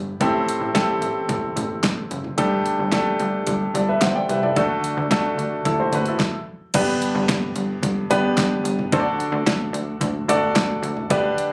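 Warm and hopeful, this piano-driven pop excerpt moves at 110 BPM in a straight 4/4 in G major, tuned to A4 = 444 Hz. A clear, natural grand piano with short sustain sits up front as accompaniment, ranging from G2 to G5. A plucky analog bass adds punchy, funky low end with a sawtooth and square-wave tone, a fast-attack filter pluck and a decaying tail. Electronic, layered pop drums enter at 0.2 seconds with a knocking kick, a fat snare, hi-hat, crash and toms, overdriven and re-recorded in a small room so they hit up front. The harmony moves through Am7, Gsus2 and D, then a stop from 6.2 to 6.7 seconds clears the way for a new section on G and D. It sounds captured on a phone in the room, with a club-like ambience, and it is cut from a longer piece.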